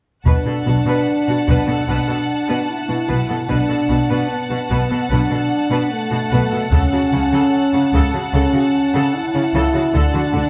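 A straight 4/4 pulse at 74 BPM drives this heroic, epic orchestral film-score passage in B minor, cut from a longer piece, where heavy-stick taiko drums and a dark, dry triangle sound in the background at the opening, with the taiko returning at 6.7 s. Up front, the French horns hold smooth sustained chords over lush, vibrato-rich bowed cellos and woody double basses, while violas supply accompaniment beneath two violin sections, one carrying a smooth melody and the other a distant second line. Moderate scoring-stage reverb gives the dark, warm production its space as the harmony moves from Bm7 through F#m/C# to D.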